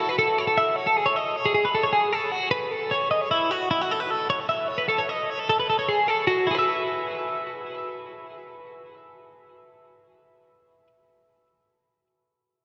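A dreamy, reverb-soaked sound fills this short rock excerpt, its long cathedral-like tail of 5.9 seconds hanging around every note. A lone twelve-string electric guitar carries the whole piece, its picked tone clean and compressed, sitting up front in the mix with a touch of delay. It moves at 152 BPM in an uneven 5/4 with a straight feel, in E major, staying within the octave from E4 to E5. The harmony drifts from a rootless F#m to Amaj7 and then B7sus4, before settling on a bare E5 at 6.5 seconds as the music shifts into a new section. The mood is playful yet wistful, and the guitar plays on until 10.9 seconds as the fragment ends.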